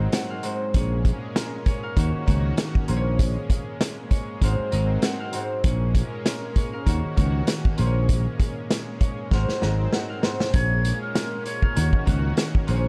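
A growly, amped fretless electric bass sits up front in this tough, moody boom-bap hip-hop excerpt at 98 BPM in Bb minor, backed by a punchy vintage drum kit with a pumping small-room sound, a ringing fingerpicked concert harp and a lush, detuned sawtooth pad with chorus, with a drum fill at 9.3 s before a breathy, hollow jazz flute with vibrato and analog delay enters at 10.5 s.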